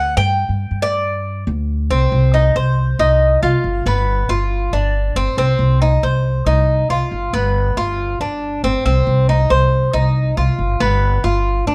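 Picked, metallic arpeggios on an acoustic Cuban tres, its doubled and partly octave-doubled strings ringing up front, carry this sultry, nostalgic fragment of Cuban son and guajira, with a woody, thumpy pizzicato upright bass on gut strings beneath it from the start as the harmony rocks between Cm and G7 from 1.9 seconds, all set in a dark production with a moderate large-studio reverb.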